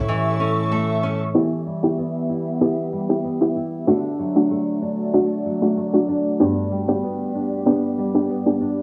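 This sultry, hypnotic dancehall excerpt opens with a glassy FM pad holding sustained chords in E dorian, its slow-attack, ethereal tone softened by ensemble chorus, its own reverb and a phaser, while a nylon-string guitar fingerpicks arpeggios up front with a full-bodied, classical depth and a touch of tape echo. The tempo sits at 95 BPM in a straight 4/4, and the harmony moves from A to Em at 1.4 seconds, then on through D and G. At 1.3 seconds a soft, round pluck joins as accompaniment, its dark, short-decaying tone thickened with chorus and placed prominently in the mix. The pad stays mellow and sits further back behind the guitar and pluck. The overall sound is dry and gritty, with a low-pass filter, light reverb and the ambience of a small room.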